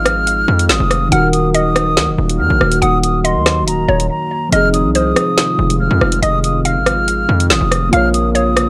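Drenched in echo-heavy digital ambience, this tense, ominous half-time drill excerpt sets an airy, hollow concert flute melody with vibrato over a round, warbling FM synth pluck, a clean tine electric piano that sounds as if played through built-in speakers, and a detuned analog pad sitting dark in the background, while an up-front, saturated 808-style bass and a drill kit of bright hats, rim clicks and a woody snare with 12-bit sampler grit anchor the low end and beat, with a short break from 4.1 to 4.5 seconds.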